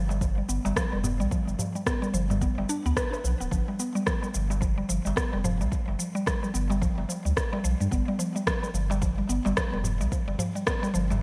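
A woody, mallet-like FM synth pluck leads this meditative organic downtempo excerpt, its mellow arpeggios shimmering through chorus, phaser and digital delay under a filter sweep, while a round, sine-toned sub bass pumps beneath it from 0.0 s. At 109 BPM in 4/4 with a swung 16th-note feel, produced cabasa and rim clicks soaked in gated reverb enter at 0.1 s, a layered electronic kick follows at 0.2 s, and a crisp metal-shell darbuka sits softly in the background. The piece rests on a G7 chord, framed by a lush hall reverb and bright 1980s-style digital production.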